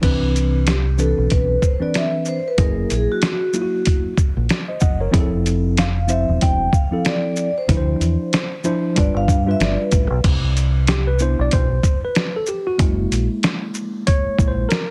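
Smooth and mellow, this swung jazz-hop groove sets a worn, slightly out-of-tune tine electric piano over a dark, round fingered dub bass and a muffled, pitched-down sampler-style drum kit with a thumpy kick, while a ringing vibraphone with soft mallets, slow motor vibrato and tape echo carries the melody from 0.7 to 10.1 seconds before the electric piano takes the solo at 10.2 seconds, in a dry, heavily compressed radio sound.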